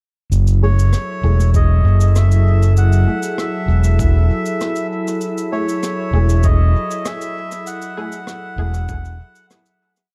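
A dark, dry production carries this short, hazy and spacious ambient dub piece at 98 BPM in F# dorian, where an overdriven fingered electric bass sits up front with long gliding notes beneath a smooth, chorused analog pad of slowly shifting F#m9 chords, while a reedy, breathy melodica plays motif-based call phrases through dub echo, sparse muted filtered dub chord stabs echo in the background, a glassy harmonics texture holds a drifting high note from 1.2 seconds, a sparse echoing beat of cabasa and rim click ticks along, and a muffled, thumpy electronic kick enters softly at 1.5 seconds before a fade-out begins at 6.8 seconds.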